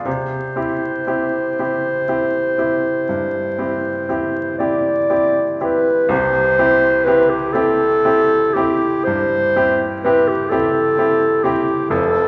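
A bright baby grand piano with audible action noise opens this tender romantic classical fragment in C major, joined almost at once by a warm, up-front clarinet singing the melody in a slow, rubato 12/8 at 38-43 BPM. The duo is heard from further back in a reverberant recital hall, with vinyl crackle and a dulled top end.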